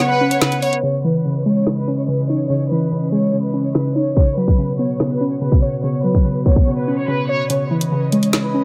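A hard-clipped kick punches up front in this ominous, menacing drill excerpt, driving an electronic kit with a woody snare and warm hats through a half-time feel. Above it, a distant, lush violin section carries the melody with expressive vibrato, softened by a low-pass filter and tape echo. A round, full-bodied pluck sits up front with a fast attack, decaying notes and a dark chorus sheen, while an airy, breathy pad holds sustained chords in the background. A jazz flute adds a brief second line with a metallic, airy tone and tape echo, heard only in the opening 0.8 seconds. Filter sweeps run across the sections, breaks land at the start and around 6.7 seconds, and the kick drops out from 7.5 seconds as the harmony shifts between Bsus2 and C#madd9 inside a digital ambience.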